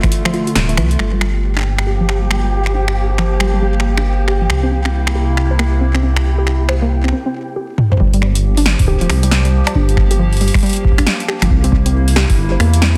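Swung sixteenths at 137 BPM in 4/4 drive this intricate, cerebral IDM passage in G dorian, cut from a longer piece and moving between Gm7 and C7. An electro analog drum machine ticks through metallic hi-hats, finger snaps, cowbell, toms and a punchy, softly clipped snare, all touched by digital delay, while a deep, tape-warm electronic kick sits out for most of the opening and returns at 8.0 seconds. Beneath it, a dark detuned saw bass rumbles up front with a beating unison tone. A warbly, dusty pluck spins chorused arpeggios with digital delay, and a filter sweep runs across its sound through the first section. A nostalgic, lo-fi tape-like pad holds mellow sustained chords, coloured by chorus, phaser, 12-bit sampler grit and sidechain pumping. A flickering, grainy granular texture hovers in the background from 1.5 seconds until a short break at 7.1 seconds, and a drum fill then leads into the second section, all under light digital ambience and a dense, heavily limited master.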